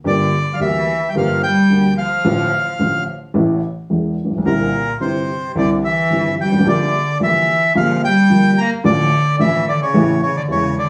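A reedy, mid-forward bandoneon sits up front and carries the melody in this passionate, dramatic tango, a short fragment of a longer piece moving at 109 BPM in a rubato 4/4. Beneath it, a bowed cello sings a distant second line with vibrato and portamento, while a dark, worn upright piano with woody, slightly detuned tone and audible action noise plays the accompaniment through a progression built on Gm, Dm/A, A and Cadd9. The trio plays together live in one room, wrapped in a wet studio reverb.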